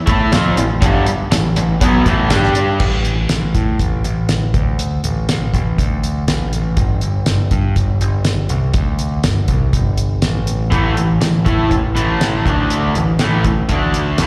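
Swaggering and brooding, this classic rock clip opens with a raw, overdriven garage guitar riff with slapback echo and a very quiet cowbell over a growling, punchy electric bass and a cloth-damped, thuddy drum kit with dark cymbals and a fat snare, then the guitar drops out at 2.8 seconds, leaving bass and drums to carry the groove before it returns at 10.7 seconds, all heard as a live gig through the venue's PA in a recital-hall reverb.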